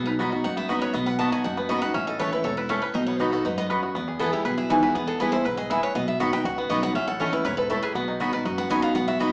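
A full-bodied jumbo acoustic guitar sits up front, picking the accompaniment under a driving, virtuosic bluegrass excerpt at 240 BPM in 4/4 with a straight feel, set in B mixolydian. Over it, a bright picked steel-string guitar carries the melody together with a twangy banjo played with fingerpicks, its attack percussive. A mellow mandolin with doubled strings joins at 0.2 s with short stabs, while a growly, thumpy upright bass plucks low beneath everything. The harmony moves between B and A before shifting to E at 4.0 s for a second passage that returns to B and A. The ensemble sits in a wet, large studio reverb and is heard from further back in the room, with a small-speaker quality to the sound.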